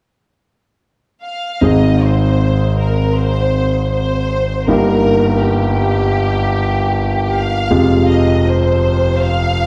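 In a straight 4/4 at 79 BPM, this tender, heartfelt pop fragment in Ab major is cut from a longer piece. A studio violin section carries the melody from 1.2 s. Its bowed ensemble tone is rich and focused, with vibrato, and its line moves between G4 and F5. A concert grand piano joins as accompaniment at 1.6 s, sounding clear and open with a deep bass that reaches down to F1. Beneath the violins, the harmony moves from Ab through Eb/G to Fmadd9 at 7.7 s. A wet recital hall reverb and a dark, warm production give the whole passage an enveloping glow.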